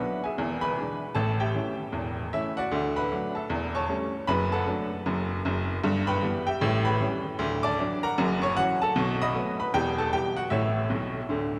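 Awash in a vast, echoing cathedral reverb, this exuberant, playful stride jazz excerpt features a solo upright piano, woody and up front with a short sustain, swinging through a progression rich in seventh chords across its full range from E1 to D#6 before closing with a brief fill at 10.9 seconds.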